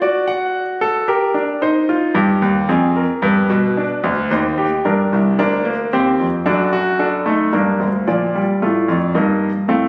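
Driving and serious, this short passage cut from a longer piece is a baroque-style four-part fugue for solo grand piano, moving at 112 BPM in 3/4 with a straight feel. The concert grand sounds clear, intimate and polished, sitting up front with deep bass, long sustain and audible action noise, spanning C2 to F#5. The harmony circles through dark minor territory, with Gm, Cm/Eb, Fm and a G major chord, and D/F# pulling back toward G minor. At 8.1 seconds a new section brightens toward Bbmaj7 before settling on Eb/G by 9.2 seconds. The piano sits in a wet recital-hall reverb, captured on a phone in the room, giving a compressed, close-yet-roomy sound with studio ambience.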